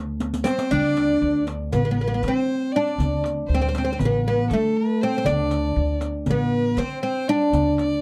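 A dry, close studio sound in the 1970s style frames this festive, warm-hearted excerpt of a Turkish makam ensemble, moving in a straight 9/8 at 238 eighth-note beats per minute with the A tuned to 441 Hz. Up front, a bright, woody fretless oud plucked with a plectrum carries the melody on its deep double strings, joined by a single bowed violin playing a smooth, even second line with vibrato, while a pizzicato upright bass with steel strings anchors the low end. A short drum fill from 0.2 to 0.7 seconds brings in the crisp, compressed and saturated metal-shell darbuka in the background alongside the close, dark jingles of the riq.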